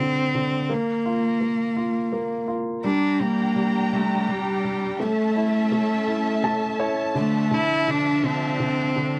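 A dry, close 1970s-style studio sound with light reverb frames this dramatic, aching pop excerpt in D minor, moving in a slow 6/8 at 56 BPM (dotted quarters) and tuned to A4 = 436 Hz. An intimate solo cello carries the melody up front with light vibrato, a soft attack and an airy sul tasto bow. An open, long-sustaining baby grand piano accompanies throughout and adds a fill at 6.1 seconds, while from 2.8 seconds a dark, lush studio string section holds expressive sustained chords as the harmony moves from Bb5 through Gm and A to Dmadd9.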